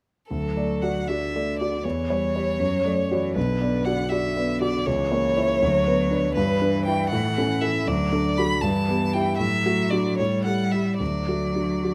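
From 0.3 s, an up-front grand piano accompaniment with a warm tone, a rich, focused solo violin melody with vibrato and a smooth top, and a distant, expressive bowed cello second line with vibrato and portamento all sound together in this lively, graceful, quick classical-period piano quartet movement, played rubato in 6/8 and set in a wet stone room.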